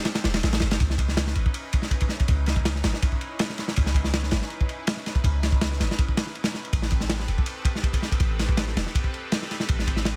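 A lush, detuned sawtooth pad with chorus and phaser drifts over a crunchy, saturated breakbeat kit of tight kick, medium-tuned snare and dark ride cymbal, sitting up front in a small room, before a deep, boomy 808-style sine bass enters at 0.2 seconds, giving this brief cut from a longer dark, atmospheric drum and bass and jungle track a shift from C#m9 to Am9 at 6.7 seconds.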